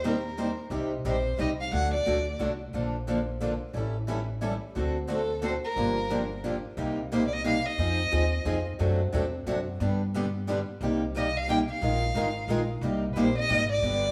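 A bittersweet, virtuosic slice of acoustic string swing in 3/4 at 178 BPM opens with a bowed violin, close and up front with soft-attack vibrato and expressive portamento, over two picked steel-string acoustic guitars and a pizzicato upright bass. The violin sings in short phrases between A4 and G5, while one guitar sounds bright, boxy and parlour-like with fresh strings and finger squeak, the other warm and concert-toned, and the woody, thumpy gut-string bass anchors the low end. The band plays live in a small stone room with wet reverb, and the music moves from G minor to C minor at 6.8 s in this cut from a longer piece.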